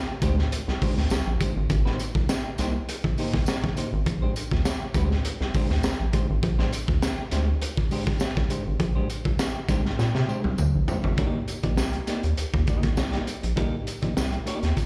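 A rubbery, bouncy square-wave bass sits up front in this funky, hypnotic excerpt, its filter pluck giving each note a fast attack before it sustains. Beside it, a crunchy breakbeat kit sounds saturated and gritty, with a tight kick, a high-tuned snare, hi-hat and toms, all under a rolled-off top. A clean, fingered semi-hollow electric guitar plays dark chords lower in the mix, bathed in spring and plate reverb with a slapback echo. A jingly tambourine sits close but in the background. The harmony moves between Bb13 and Abmaj9 until a drum fill from 10.0 to 11.2 seconds ushers in a new section on Cm9. The excerpt comes across like a live gig heard through the venue's PA, carrying the light reverb of a recital hall.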